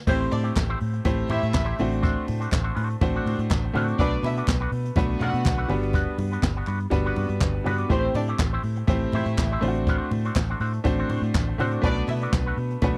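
Disco in A dorian at 122 BPM with a driving, danceable straight 4/4 feel, this dry, close 1970s-style studio excerpt sets a round, foam-muted vintage electric bass and a brushed jazz drum kit with a boomy kick and dark cymbals under a brilliant baby grand piano and a twangy, clean envelope-filtered electric guitar, while a reedy, gut-string violin section with light vibrato carries a second line over Am7, D7/A, Bm7 and Gmaj7 changes, and very quiet hard-hand congas and crisp group handclaps, the claps entering at 0.6 seconds, add percussion.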